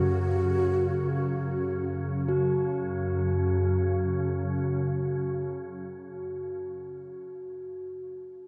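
Spacious and meditative, this short cut from a longer piece of world meditation music floats in free time inside a vast, echoing space with a huge, lingering reverb. A breathy low wooden flute opens the melody, its crisp, chiffy attack and unsteady vibrato caught close to the microphone, then trailing into a diffuse ambient delay before it falls silent at 1.7 seconds. Beneath it, a soft organ-like pad holds a calm, sustained low drone throughout, its pure sine-and-triangle tones thickened by ensemble chorus, a touch of ring modulation and its own reverb, sitting up front with a slow attack and long release. A quartz singing bowl, struck with a wooden striker, rings on the same pitch as the flute for the full length, dark and smooth, with slow beating in its tone. After 2.3 seconds the music moves into a second passage carried by the drone and the bowl alone, leaving a still, resonant haze.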